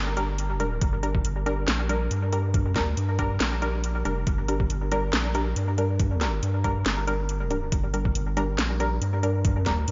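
A dreamy, reverb-soaked mix with a dulled top end carries this dark, heavy stretch of deep dubstep, set at 139 BPM in a half-time feel with light swing on the 16ths and centered on G minor. A thick, saturated triangle sub bass sits up front from the start, joined at 0.2 seconds by muted, detuned sawtooth chord stabs with a filter pluck, chorus and dub echo, and by a layered, tape-warm garage kit of cracking snare and metallic hats. At 0.8 seconds an overdriven, muffled, pitched-down kick arrives with a thumpy, compressed punch.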